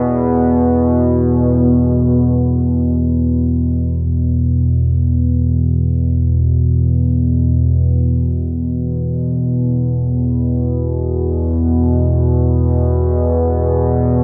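Light reverb and an echo-heavy mix give this ambient fragment a cavernous, ominous atmosphere. A lone analog drone sits up front and fills all 14.2 seconds: an evolving blend of sawtooth and pulse-wave tones shaped by pulse-width modulation, with a slow attack, long sustain and long release, thickened by chorus and trailed by analog delay. Tuned to A4 = 439 Hz, it holds a low E5 chord between E2 and B2 and moves into a new section at 4.1 seconds, its warm, shifting body carrying the entire fragment in free time.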